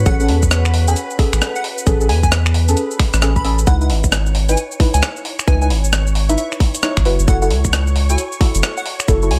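UK garage in a bouncy, late-night two-step groove, where a tight, up-front electronic kick and a gritty, pitched-up sampler kit of cabasa, finger snaps, hi-hat and rim click swing over a round, soft dub sub bass, while deep mellow chord stabs with chorus and phaser, a catchy, bright plucky unison lead through tape echo, a silky string machine in the background and a moody ambient pad that stops at 3.7 seconds move through Amaj7, C#m9 and F#m7 chords.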